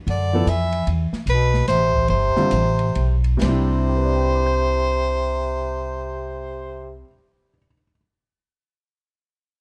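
Dark, dry production frames this searching, hypnotic modal jazz excerpt in a swung 3/4, where a bright, close-miked soprano saxophone carries the melody with light vibrato over a vintage-toned bass clarinet second line, a woody, thumpy pizzicato upright bass up front and a clear, short-sustained baby grand piano. An airy kit with dark cymbals and a boomy kick plays through a slowdown from 0.9 to 3.4 seconds and drops out at 3.6 seconds. The saxophone, bass clarinet and bass carry on until 7.0 seconds, and the piano continues until 8.0 seconds.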